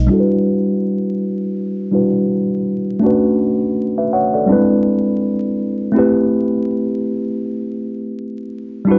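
A worn, slightly out-of-tune tine electric piano sits up front in this reflective, hazy hip hop fragment at 82 BPM in E minor. It is coloured by cassette tape and a low-pass filter, with a filter sweep running from 0.1 to 9.0 seconds, as it moves through Em7, Bm7, E7b13 and Am9 over a swung 4/4 feel, vinyl crackle and a moderate studio reverb.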